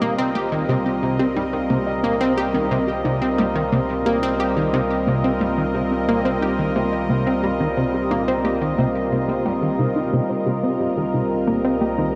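Drenched in a vast cathedral reverb, this mysterious, expansive excerpt of sequencer-driven ambient space music rests on a single Cm7 chord, held by a bright, evolving sawtooth pad with chorus that sits up front. A tight, driving detuned synth riff with tape echo pushes forward beside it, while a very quiet, warbling lo-fi pluck spins dusty arpeggios. A round sine sub bass fades in across the full 12.2 seconds, and a dark, breathy, wind-like tuned noise texture drifts faintly above.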